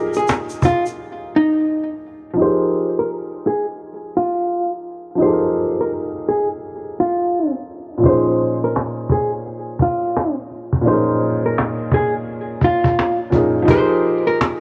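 A muffled cassette sound and light small-room reverb give this melancholic, nostalgic lo-fi hip hop excerpt a homemade feel, rolling at 85 BPM in F minor with a lazy sixteenth-note swing. A hollow-body electric jazz guitar carries the melody, its dark, clean, picked tone compressed and filtered, with a tape echo trailing each phrase. Up front beside it, an upright piano plays woody, smooth chords with short sustain, moving from Fm11 to Bbm11 and back. A grainy, bright tube shaker and a snappy cajon played with soft hands are heard only briefly at the opening, and a break follows before a long filter sweep takes hold. The cajon returns at 8.0 seconds, its band-limited snap roughened by vintage 12-bit sampler grit as it plays alongside the guitar and piano to the close.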